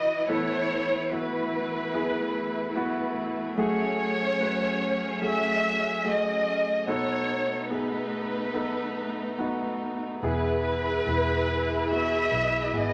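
A lush, vibrato-rich violin section carries the hopeful, heartfelt melody in this 72 BPM pop excerpt in E major, over an intimate concert grand piano with audible action noise and long sustain, smooth sustained string chords with expressive portamento, and a dark, foam-muted fingered electric bass that enters at 10.2 seconds, all set in a short, wet studio ambience as the chords move from Asus2/E through F#madd9 and B7 to E.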